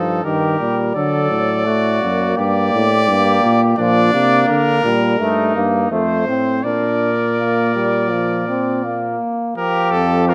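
Classical brass ensemble music in the manner of an imitative canzona, this short excerpt from a longer piece sounds joyful and elegant in a steady, straight four. A bright trumpet carries the melody up front with a light vibrato, while a mellow second trumpet, softer in attack and set back in the room, sings the second line beneath it. A trombone with a gentle vibrato and rounded onsets fills in the accompaniment from a similarly distant, roomy position, and a dark euphonium anchors the bass close to the listener. All four voices play together from the opening through 10.3 seconds, with the harmony settling onto the home chord at 3.8 seconds and coming to rest at 9.6 seconds. Close, detailed microphones capture each instrument clearly within a moderate concert hall reverb.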